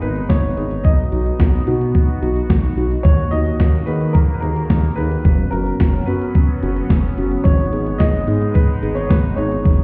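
Melancholic yet driving, this synth-pop excerpt moves at 109 BPM in 4/4 over a G#m, B, D#m, F#sus4 progression, with a thumpy, sampler-style 12-bit drum machine and a saturated sawtooth synth bass sitting up front. A clear concert grand piano carries the melody through tape echo, while muted, felt-like synth keys with a dark, filter-swept tone and an evolving, resonant pad with a bright sawtooth edge, both chorused, fill in the harmony. The whole mix sounds muffled, as if heard through a wall, and sits in a stone room reverb with digital ambience.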